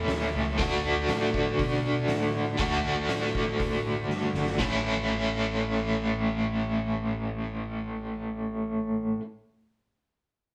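An overdriven electric guitar, bright, double-tracked and up front with tremolo, drives a swaggering, rowdy garage rock riff in A major at 120 BPM, backed by a growly, amped picked bass and an oversized low-tuned drum kit with a fat snare and punchy kick that plays a fill from 4.1 to 4.6 seconds before dropping out, all captured live in one room with moderate studio reverb in this cut from a longer piece.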